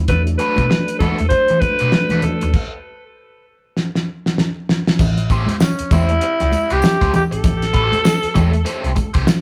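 Strutting, funky mid-tempo funk at 98 BPM in A mixolydian, where a growling, raspy alto saxophone with tape echo leads up front over a thuddy cloth-damped drum kit, a round hollow-body picked bass, bright congas and a crunchy wah guitar, while a mellow tonewheel organ with slow rotary speaker holds chords only until 2.5 seconds, a stop and drum fill lead into the second section at 5.0 seconds, where a jingly tambourine joins in the background of this rough rehearsal-room recording cut from a longer piece.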